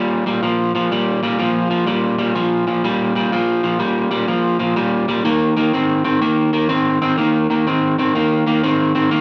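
A slightly broken-up electric guitar, picked and twangy, sits up front in a solo role in this gritty, laid-back blues excerpt, played with a swung feel in the low-to-middle register. It moves over Bb5 and then Eb5 power chords, with the change arriving at 5.2 s. A moderate large-studio reverb gives the live-room sound some space as the short cut ends at 9.2 s.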